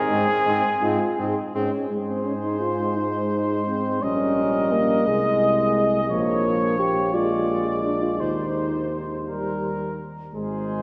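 A classical brass quintet piece in a slow 6/8, this short passage cut from a longer work carries a warm, noble mood. The cornet sings the melody with light vibrato and a soft attack, sitting back in the blend, while the trumpet carries a second line up front, mellow and roomy with its own light vibrato. The French horn fills the middle with a smooth-topped accompaniment with vibrato, joined by a trombone adding low supporting notes in the background. Underneath, the bass trombone anchors the harmony from a distant, roomy position. Everything sits in a wet church reverb with a long 3.3-second decay, and the harmony moves through a progression that arrives on an Eb chord at 9.3 seconds.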